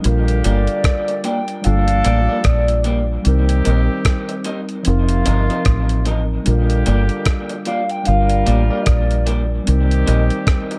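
Over a 75 BPM swung groove in 4/4, a gritty, thumpy sampler-style kit of hi-hat, kick and rim click and a dark, round fingered dub bass sit up front beneath mellow tine electric piano, a distant, roomy horn section with light vibrato, slightly broken-up guitar stabs from 0.4 seconds bathed in lush chorus and dub echo, and a hollow, woody clarinet-like synth lead with chorus, phaser and tape echo carrying the melody from 0.5 seconds, giving this sweet, romantic lovers rock reggae excerpt in Bb major its gently cycling Bb6, Gm7, Cm7 and F7sus4 changes under light reverb.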